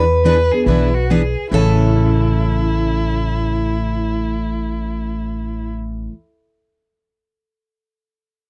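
Opening on an E7 chord that resolves to A at 1.5 seconds, this lively, swinging fragment of acoustic string swing in A major at 141 BPM sets a bright, picked steel-string concert guitar melody over a full-bodied jumbo guitar accompaniment with audible finger squeak, a boxy parlour guitar with fresh strings sitting in the background, and a woody, thumpy gut-string upright bass played pizzicato up front, while a distant, expressive bowed violin with vibrato and portamento adds a second line from 0.3 to 5.7 seconds, the whole heard in a dry, close 1970s-style studio sound.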